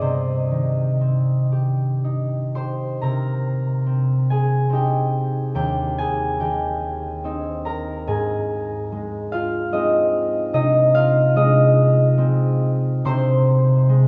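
Serene and peaceful, this short classical passage for solo concert harp unfolds in C minor at 72 BPM in 3/4, with uneven, rubato beats that let it breathe freely. The harp sits up front, bright and ringing, its thumb-plucked notes spanning from Eb2 to C6 as the harmony moves from C minor toward A-flat. A lavish cathedral reverb with a long tail surrounds the instrument, giving the passage, cut from a longer piece, the spacious feel of a church or concert hall.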